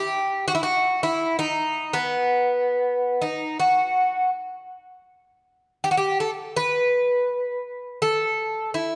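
A moderate, stage-like reverb with a 1.9-second tail surrounds a solo Greek bouzouki, placed up front and heard from 0.0 to 9.0 seconds in this brief excerpt of a passionate, mournful fado. The acoustic instrument is picked on its doubled strings, some of them octave-doubled, giving a bright, metallic ring within a range from B3 to B4. The playing moves in a free, rubato feel over its 4/4 metre.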